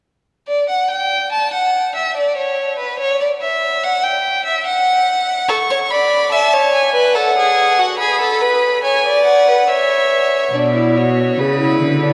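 A long, wet cathedral reverb with a 7.2-second tail surrounds this stately, elegant baroque-style fugue for string quartet, cut from a longer piece and moving at 72 BPM in 3/4 with tuning at A4 = 438 Hz. A clear, focused solo violin carries the melody from 0.5 seconds, sitting up front with vibrato, and a second violin, warm and smooth, adds its own close line at 5.5 seconds over chords that settle on C#m. At 10.5 seconds a new section begins as the second violin stops and an even, bowed viola and a rich, up-front cello enter beneath the melody.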